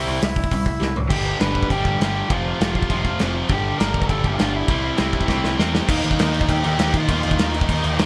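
A straight 4/4 pulse at 201 BPM drives this upbeat, energetic punk rock excerpt, with a loose acoustic drum kit entering at 0.2 seconds in a small, pumping room: tight kick, medium-tuned snare, hi-hat, crash and toms sit up front and break into fills at 0.8 and 5.3 seconds. A bright, double-tracked distorted electric guitar plays the riff up front over a growling, overdriven picked bass heard direct and amped, while a lo-fi garage guitar carries the melody with overdrive and delay. The chords move from C through G, F5 and Gm back to C before landing on Eb, with a light reverb on the mix.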